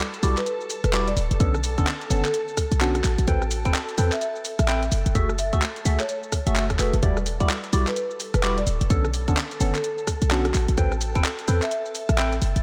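A silky string machine opens this moody, skippy two-step garage excerpt at 128 BPM, its sustained minor-ninth chords sitting in the background through phaser, ensemble chorus and sidechain pumping. Garage drums with bright hats, handclaps, rim click and shaker arrive almost at once, alongside a barky tine electric piano playing stabs through phaser and delay, a punchy, up-front 808-style bass, and a woody marimba melody played with soft mallets and treated with delay. A tight electronic kick joins at 1.4 s and drops out at 11.2 s, the sixteenths swing throughout, and light digital ambience surrounds the whole track.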